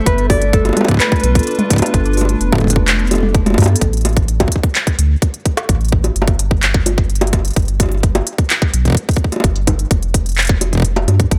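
IDM at 128 BPM in a straight 4/4, eerie and intricate, where a warbling, lo-fi tape-like pad with chorus and reverb and a ringing, airy vibraphone spinning arpeggios through a delay sit in the background over a G7 chord, a dark, clean electric guitar carries a fingered melody through tape echo until 3.3 seconds, and after a drum fill at 3.6 seconds the pad and vibraphone fall away until 11.3 seconds, leaving an up-front, deep, round sine sub bass beneath a tight electronic kick and a crisp electronic kit of bongos, handclaps, hi-hat and toms with delay, both drum parts overdriven, re-recorded in a large room and placed up front in a dry mix tuned to A4 = 436 Hz.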